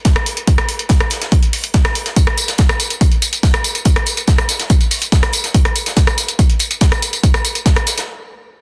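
Intense and relentless, this short techno excerpt drives at 142 BPM in a straight 4/4 feel. A punchy electronic kick drum sits up front with an analog, tape-warm character, as though re-recorded in a small room, and it drops out at 7.7 seconds. Beside it, an analog drum machine adds hi-hat, rim click and tambourine, with soft clipping on its snare and the same close, small-room color. Further back, a huge acoustic arena kit supplies hi-hat and a medium-tuned snare in a big-room space, its hats pumping from sidechain compression and its snare, hats and room thinned by high-pass filtering. Light reverb and a dense, heavily limited modern master hold it together until everything stops at 8.1 seconds.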